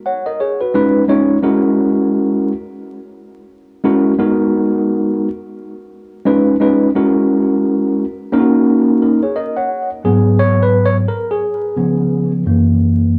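A clean tine electric piano sits up front, heard through its built-in speakers and touched by analog delay, playing alone from 0.1 to 13.2 seconds over swung sixteenths in this cool, mellow hip hop fragment cut from a longer piece. Its lush minor ninth and dominant chords give way at 9.7 seconds to a solo passage of simpler sevenths. Light reverb, transformer saturation and vinyl crackle lend the otherwise dry hardware recording a gritty, lived-in texture.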